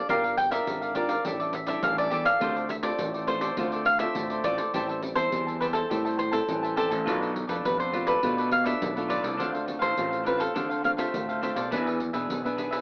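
Nostalgic and lively, this 103 BPM samba-choro fragment pairs an up-front cavaquinho melody with a second crisp, picked cavaquinho accompaniment, a small fingerpicked nylon-string guitar in the background, a growly overdriven fingered electric bass and a jingly pandeiro, all played live in one room with an AM radio sound as the music moves from D minor into A minor at 4.7 seconds.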